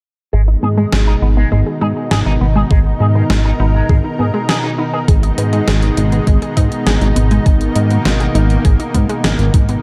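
At 0.3 seconds this cinematic, nostalgic synthwave passage in G# minor opens on a lush, detuned unison pad holding a G#m chord, a round analog pluck arpeggio set back in the mix with delay, a twangy envelope-filtered electric guitar riff roughened by 12-bit sampler grit, and a glossy, up-front pulse-wave synth bass, while filter sweeps move through the bass, pad and arpeggio. At 101 BPM in a straight 4/4, a gated 80s drum machine brings hi-hat and a gated-reverb snare at 0.9 seconds, and an overdriven, thumpy electronic kick lands up front at 2.7 seconds. The guitar drops out at 5.0 seconds as the cut moves into its second section, with the pad's sidechain pumping and the dark, lightly reverberant production carrying it on.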